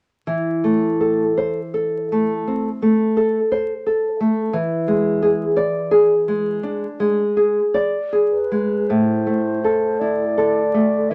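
A romantic duo for flute and classical guitar, this passage is cut from a longer piece and carries a solemn, yearning mood with a free, rubato sense of time. The nylon-string guitar opens alone at 0.3 s, its dark, small, fingerpicked tone placed up front as it carries the accompaniment through the harmony. At 8.3 s the baroque flute enters with the melody, its wooden, airy voice softened by vibrato, a gentle attack and rolled-off highs, and it sits lower in the balance than the guitar. Soon after, a new section begins at 8.9 s, and both instruments play on together to the end of the cut. A moderate studio reverb gives the pair a modest sense of space, and a layer of vinyl crackle lends the sound an aged patina.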